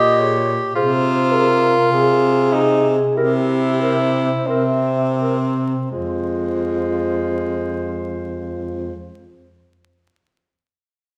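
A close, up-front clear baritone saxophone with vibrato, a clear tenor saxophone and a mellow, lightly vibrato-touched alto saxophone open this yearning, melancholic classical fragment for single-reed quartet in F minor at a rubato 40-54 BPM that slows through its first 5.9 seconds, with a soft-attacked, warm clarinet entering at 0.2 seconds to carry the quiet melody above the alto's second line, the tenor's accompaniment and the baritone's bass, all set in a reverberant recital hall heard from further back, with vinyl crackle.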